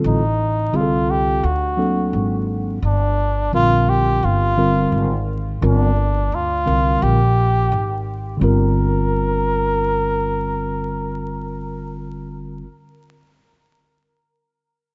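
Jazz-hop with a cool, smoky mood, this short cut from a longer piece rides a swung sixteenth-note groove in 4/4. A cup-muted trumpet carries the melody up front, soft and veiled, with a breathy, close-miked tone and light vibrato in a jazz style. Beneath it, a mellow tine electric piano plays clean accompaniment through its built-in speakers, while a pizzicato upright bass with steel strings sits close and growly, woody in the low register. The harmony moves through Am7b5 and D7b13 before settling on Gm7, and a second section arrives at 8.4 seconds. Light studio reverb and vinyl crackle colour a rough home-demo mix with a dark, rolled-off top end.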